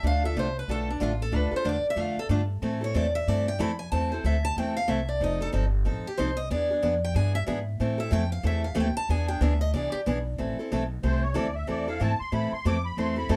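Acoustic string swing in the jazz manouche style, fiery and bittersweet, moving at 185 BPM in A minor with a 60% swing on the eighths and a brief turn through E7#9 before settling back on Am. A bright, boxy picked steel-string guitar carries the melody until 10.0 seconds, with audible finger squeak, while a second parlour-toned guitar plays accompaniment and a woody, thumpy pizzicato upright bass on gut strings sits up front beneath them. At 11.0 seconds a shimmering, reedy musette accordion enters for its solo in the upper register, all within a dark production and light reverb in a clip cut from a longer piece.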